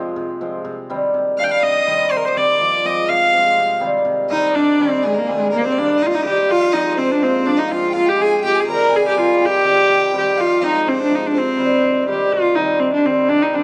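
Klezmer in a soulful, festive mood, this passage from a longer piece opens on an up-front hammered cimbalom with a shimmering, ringing accompaniment. At 1.4 seconds a reedy, gut-string viola with a warm period-style tone enters bowed in the foreground, taking a featured solo through 4.5 seconds, while a clear, focused violin with vibrato adds a softer second line until 12.0 seconds. A moderate plate reverb surrounds the ensemble as the harmony moves between F minor and C minor.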